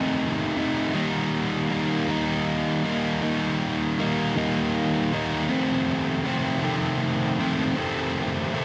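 A dreamy, reverb-soaked sound with a moderate plate reverb frames this bittersweet, restless rock excerpt in a slow 6/8 at 53 BPM, where a lone overdriven electric guitar, warm, picked and double-tracked with delay, sits up front from F2 to Eb4, moving through F7, Eb and F5 chords before the cut at 8.6 seconds.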